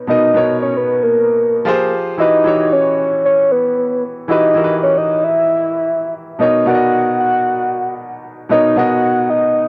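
Amapiano at 114 BPM in B major, with a soulful mood and a gentle 16th-note swing, cut from a longer piece. A clear, up-front grand piano plays short-sustained chords moving from Bmaj9 through Fmadd9 and Emadd9 back to Bmaj9, while a soft, octave-layered synth lead carries the melody from 0.1 seconds, round, full-bodied and dark, with vibrato, chorus and analog delay. The sound is dry and gritty, with transformer saturation from hardware and a light touch of studio reverb.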